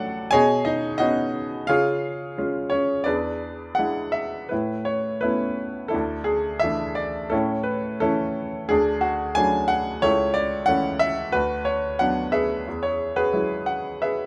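A clear, natural-sounding baby grand piano opens this sunny, relaxed classical fragment, played solo with a lyrical, rubato feel and a short sustain that keeps each chord crisp. After a brief opening passage, the music settles into a new section at 4.5 s, moving through gentle added-note and suspended harmonies such as Aadd9, Dsus2 and Eadd9 before the piece is cut off at 14.3 s. Close, detailed miking places the piano up front in a lightly reverberant space.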